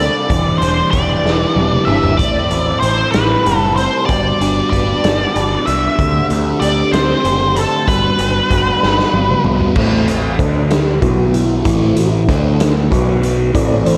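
In a slow, straight 6/8 at 63 BPM, this dark, mysterious psychedelic rock passage in A dorian is cut from a longer piece. It opens with an up-front, octave-fuzz lead guitar singing a melody through wah and analog delay, a thick, double-tracked fuzz guitar riff through phaser, a growling overdriven picked bass, and a soft, flute-like tonewheel organ holding chords through slow rotary speaker and chorus vibrato. A raw garage drum kit with a punchy kick and a rolled-off top enters at 0.3 seconds and plays a couple of fills, while the lead guitar carries its melody until 9.4 seconds. The organ then takes a solo from 9.8 seconds over an Am–D5–B5 progression, all bathed in a dreamy, lush hall reverb.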